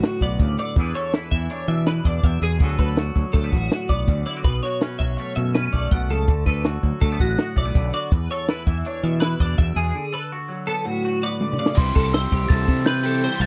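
This short cut from a longer math rock and midwest emo piece has a dry, close 1970s-style studio sound with little reverb, and its mood is intricate and wistful. At 164 BPM in a straight 5/4, a compact cocktail drum kit sits up front, dark and smooth with a high-tuned snare, a punchy kick and a rolled-off top, under a growling fingered electric bass that is overdriven and bright. A twangy clean electric guitar with lush chorus plays accompaniment, and a compressed twelve-string electric guitar with ensemble chorus spins bright arpeggios over chords moving among D6, E7 and B9sus4. A break arrives at 10.0 seconds, and a drum fill at 11.4 seconds leads into a new section on C6 at 11.8 seconds, where the clean guitar drops out. There a glockenspiel struck with soft plastic mallets carries an airy, bell-like melody, joined by a scooped, double-tracked overdriven electric guitar riff.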